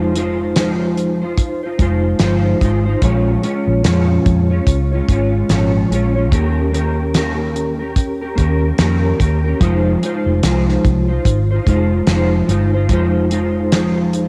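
Wistful and mellow, this short cut from a longer indie and bedroom pop piece drifts along at 73 BPM in 4/4, with a 60% swing on the sixteenths giving it a lazy, loose feel in F minor. A mellow electric guitar carries the accompaniment up front, its clean, dark, fingered tone thickened by ensemble chorus, a warbly pitch drift and a cassette tape sheen. Underneath, a vintage muted fingered electric bass sits round and punchy, its foam-muted, amped sound staying low between F1 and F2. A damped 70s drum kit enters at 0.2 seconds with hi-hat, kick and a fat snare, dry and tight with a rolled-off top and its own cassette tape colour. The chords move from Fm7 to Bbm7 and Eb7 before settling back on Fm7 at 9.6 seconds, all wrapped in light reverb and small room ambience that suits the homemade cassette recording.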